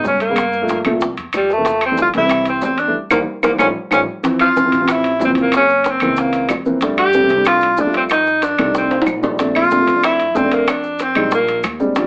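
An Afro-Cuban jazz excerpt, lively and sophisticated, cut from a longer piece and heard through a club reverb with the thin, boxy character of AM radio. A clear tenor saxophone carries the melody up front, its soft attack, vibrato and scooped notes giving it a roomy, distant jazz voice, and it drops out at 11.6 seconds. A dark, mellow upright piano sits up front beside it, its short-sustained, woody chords moving through rich extended harmony while a growly pizzicato upright bass with steel strings anchors the low end. In the background, ringing metal-shell timbales, tight high-tuned bongos played with soft hands, woody claves and grainy maracas fill out the percussion. A drum fill and a band accent arrive together at 3.0 seconds, closing the opening passage before the music moves into a new section at 4.2 seconds.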